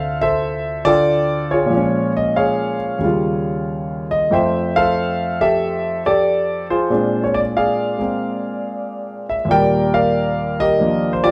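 A moderate studio reverb gives this brief passage of solo jazz an intimate, natural sound, with the audible action noise of the concert grand piano close at hand. The single piano swings through a playful run of rich chords, moving from Dm9 through Bbm7 and Eb9 to Fmaj9, then on to Bb9 and Ebmaj9. Its deep bass anchors a span running from D2 up to G5.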